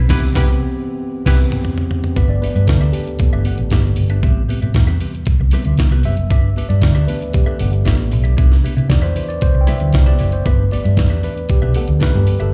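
Disco at 116 BPM in a sultry, danceable groove, heard as a live gig through the venue's PA with club reverb, opening with a band accent and a drum fill from the gritty, pitched-up breakbeat drum kit, its thumpy kick and high-tuned snare up front, while a tight horn section with vibrato punches stabs until 1.4 seconds. From 2.2 seconds the mellow tine electric piano takes a clean solo over Cmaj7, G6 and Am9 changes, supported by a round, dark hollow-body bass played with the fingers and a quiet clean electric guitar treated with phaser and slapback echo. Congas enter at 2.4 seconds, distant and high-tuned, joined by a jingly tambourine, both sitting very low in the mix of this cut from a longer piece.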